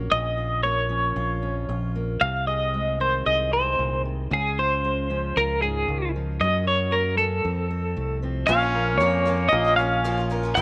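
A clean, compressed twelve-string electric guitar with tremolo carries the yearning melody up front in this wistful folk excerpt in Bb minor at 115 BPM, over a round, dark fingered electric bass and a bright fingerpicked steel-string acoustic guitar moving through Bbm, Ab/C, Db, Gb and F. At 8.5 s the steel-string guitar stops and the harmony returns to Bbm as a classical-style trumpet adds a second line, joined by a soft, felt-muted upright piano with audible action noise, a woody, boxy ladder-braced acoustic guitar on old strings, and a mellow upright piano playing arpeggios with slapback echo. Light studio reverb surrounds the mix.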